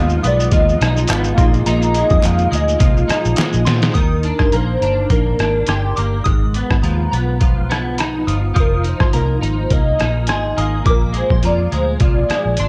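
A gritty, overdriven trip hop drum kit with a sampler feel sits up front beside a round, foam-muted fingered bass in this dreamy, nostalgic indie and bedroom pop excerpt at 104 BPM with a light swing. Above them, a velvety, detuned synth lead carries the melody, a pure FM bell traces a second line through phaser and tape echo, and a clean twelve-string electric guitar adds accompaniment with a warbly pitch drift. In the opening, wobbly lo-fi synth keys, a hollow, flute-like pad and a background group handclap add colour, and after a drum fill at 3.4 s the keys and pad fall away at about 4.0 s, leaving a dry recording with a cassette-tape grit.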